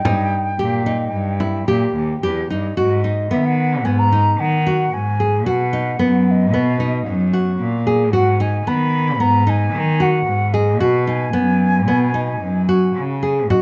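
Close, detailed microphones and light reverb give this urgent, hypnotic chamber piece in an uneven 5/4 metre a clear, intimate sound. A fingerpicked nylon-string guitar sits up front with full-bodied classical arpeggios and audible finger squeak, over a single bowed cello with an earthy, nasal tone and light vibrato carrying the bass. A pure, mellow wooden flute with tongued notes and vibrato sings the melody from a distance, while a dry frame drum played with hard hands taps in the background only until 1.8 seconds and returns briefly at 13.5 seconds as this cut from a longer work ends.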